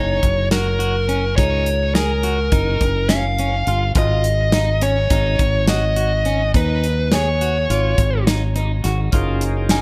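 Progressive instrumental band music in 9/8 at 209 BPM (eighths) in F# major, driving and intricate, cut from a longer piece. A dark, smooth lead guitar carries the melody up front with overdrive, plate reverb and digital delay, over picked arpeggios from an electric guitar at the edge of break-up with spring reverb, a growly fingered bass and a punchy acoustic drum kit with hi-hat, kick and medium-tuned snare entering at 0.2 seconds. At 9.1 seconds a reedy tonewheel organ with key click and slow rotary speaker joins as accompaniment, while the harmony moves from F#6 to G#5 and back to F#6 in a lightly reverberant mix.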